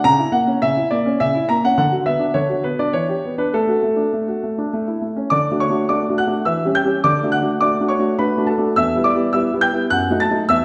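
A clear, up-front concert grand piano rings out in the wet reverb of a recital hall, playing a brief, elegant and graceful classical-period sonatina in a steady three-beat metre, its open tone reaching from deep bass notes to high upper registers across a short passage that moves into a new section at 5.3 seconds.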